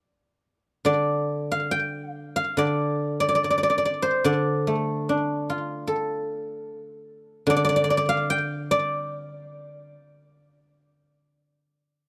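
A solo guzheng, plucked with fingerpicks, carries this brief excerpt of traditional Chinese music from 0.8 seconds to 12.1 seconds. Its silvery, ringing tone sits up front across a span from D3 to G5, touched by a slapback echo. The beat moves unevenly in free rubato over a loose 4/4, giving the playing a contemplative, elegant character. The sound is dry and close, like a 1970s studio recording, with a small room ambience around the instrument.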